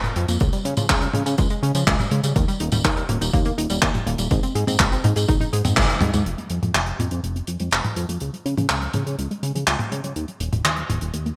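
Bittersweet and nostalgic, this italo disco excerpt in F minor moves at 123 BPM in a straight 4/4, with a chorused synth bass that sounds glossy and mellow carrying the low end under a round, detuned analog pluck that spins arpeggios through chorus, digital delay and vintage 12-bit sampler grit. A dry, up-front damped 70s drum kit with handclaps, hi-hat, tambourine and toms sits in gated reverb, joined by a punchy, tape-kissed electronic kick that drops out after 5.9 seconds as a drum fill and band accent lead into the second section. From 6.3 seconds a filter sweep moves across the pluck arpeggios, all wrapped in a bright 1980s-style digital production with moderate plate reverb.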